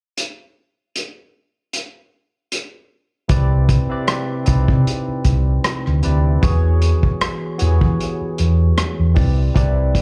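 A dark, round hollow-body electric bass sits up front in this lush 1970s-style soul cut from a longer piece, entering at 3.3 seconds alongside a barky, clean tine electric piano coloured by analog chorus and slapback echo as the chords move from Cmaj9 to E69 and back. Before that, a muffled, lo-fi vintage drum kit with a tight kick, rim clicks and a rolled-off top plays alone with a gentle sixteenth-note swing. A mellow, ringing vibraphone with soft mallets touches a single note at 9.6 seconds, all heard as a live club gig through the venue's PA.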